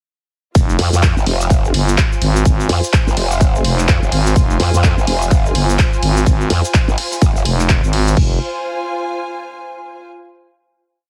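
A four-on-the-floor electronic kick at 126 BPM with swung sixteenths drives this bouncy, aggressive bass house piece in F minor, where a big-room dance kit adds claps, open hats, cabasa and crashes, a very quiet, gritty sampler-style breakbeat loop with edits brings ride and snare underneath, a thick, chopped FM bass with tube saturation pumps against the kick while a bright, wobbling growl bass with chorus answers it, and a dark, sul tasto string section drifts through slowly shifting chords from 0.6 s before holding the final chord alone until 10.0 s, the whole mix pressed into a dry, heavily compressed radio-style sound.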